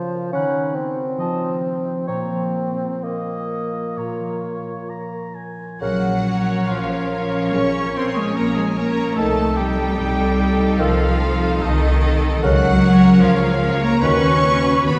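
Moving in a rubato 4/4, this melancholic, elegiac slow movement for symphony orchestra opens with a ringing, thumb-plucked concert harp in arpeggios and a mellow solo bassoon accompaniment, joined at 0.3 seconds by a hollow small flute group, a dark, soft-attacked clarinet and a lightly vibrato oboe adding second lines. At 5.8 seconds a bright, intense violin section, a very quiet, punchy French horn section holding chords, a close, lush cello section and a focused double bass section enter, and from 6.3 seconds a second violin section carries the smooth, distant melody over a faint viola accompaniment. A concert hall reverb places the orchestra further back in the room, and the passage is cut from a longer piece.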